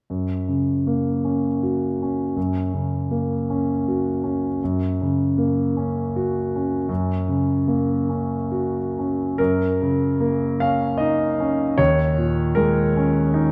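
Impressionist classical solo piano, this short passage drifts in a dreamy, hazy mood, moving between 65 and 82 BPM in 3/4 with a free, rubato feel. A clear concert grand piano plays alone from 0.1 to 13.5 seconds, ranging from Eb2 up to F5, its deep bass and natural tone set up front. The harmony rests on Gb major for the opening stretch, and at 9.4 seconds a new section turns to a Gb6 colour before settling onto an Eb7sus4 chord at 11.8 seconds. Light reverb surrounds the instrument within a dark production, and the tuning sits at A4 = 439 Hz. The recording is cut from a longer piece.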